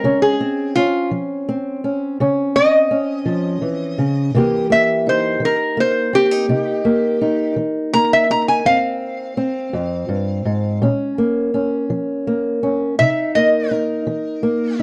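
A lap resonator guitar carries the melody up front, its metallic, nasal slide tone played with fingerpicks and given a slapback echo, ranging from D#4 to Bb5. Beneath it, an old ladder-braced acoustic guitar is fingerpicked for accompaniment, sounding dark and woody with old strings, also close and present. This is acoustic country blues in a brooding, smoky mood, moving slowly at 56 BPM in 12/8 with a straight feel. The harmony moves from Dbmaj7 to C7#9, then through Fm and Bbm before returning to C7#9 at 13.0 seconds. Both guitars play throughout this 14.8-second section cut from a longer piece, captured in a dry, close 1970s-style studio with small room ambience.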